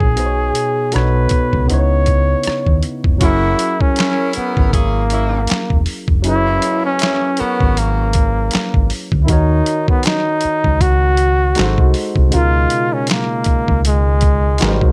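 A gritty, pitched-down boom bap drum kit with a thumpy kick, medium-tuned snare, rim click, handclaps and hi-hat swings at 79 BPM under a round, amped hollow-body bass and a barky tine electric piano, while an intimate, breathy flugelhorn carries the sultry neo-soul melody with vibrato and a soft attack and a bright saxophone section adds stabs from 3.2 to 8.1 seconds, all in a dark, lightly reverberant R&B excerpt moving from B69 through C#m9 and F#9 to a closing C#13.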